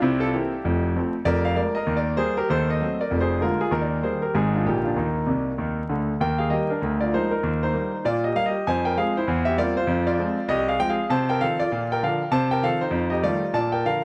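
A clear concert grand piano carries this swinging, exuberant stride jazz fragment alone, playing from 0.0 to 14.0 seconds across a range from F1 to A5, its deep bass and polished, present tone set up front with short sustain and a touch of tape echo. The tempo is a brisk 195 BPM in 4/4, with a swing of 61% on the eighth notes giving the line its bounce in Eb major. The opening passage moves through C7, F, Bb7/F, Eb and an Ebdim7 before the piano drops in a fill at 5.3 seconds, leading into a second passage at 6.2 seconds. That later stretch turns toward Fm and C7/E, then moves through F7/C and Bb to close on F9. A wet studio reverb and a layer of vinyl crackle frame the playing, giving this cut from a longer piece an old-record sheen.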